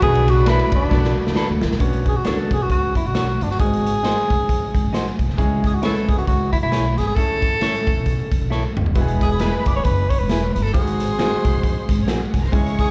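Uptempo 1960s-style soul in B dorian at 134 BPM with a swung, passionate and driving feel, heard as a live gig through a club PA, with a mellow, up-front tenor saxophone carrying the melody throughout, its scooped notes and light vibrato touched by slapback and tape echo. A punchy, gritty garage drum kit with fills at 0.9 and 8.5 seconds, a thumpy, woody upright bass and a clear grand piano drive the groove, while a dark, scooped semi-hollow electric guitar adds clean stabs from 0.5 seconds. A very quiet horn section opens briefly alongside lush, distant bowed strings, which return at 8.9 seconds over chords moving from Bm7 through G#7, C#m, A and E.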